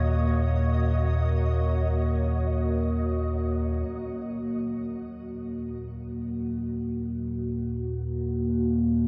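Unsettling and desolate, this dark ambient drone unfolds in free time, cut from a longer piece and bathed in a cathedral-like reverb that lingers for seconds. A deep, ominous drone rumbles low throughout, sitting up front with a slow attack and long release, and a synth drone fades in from 3.9 seconds to 9.1 seconds. Above it, a moody, full-bodied pad holds sustained chords, its detuned unison layers thickened by chorus and a shimmering reverb tail. For the first 3.9 seconds, a bright, grainy texture flickers high in pitch but faint in the mix, coloured by the same shimmer. At the very start, carillon bells ring out bronze arpeggios that are barely audible and gone by 0.7 seconds, leaving a production that feels dark and warm.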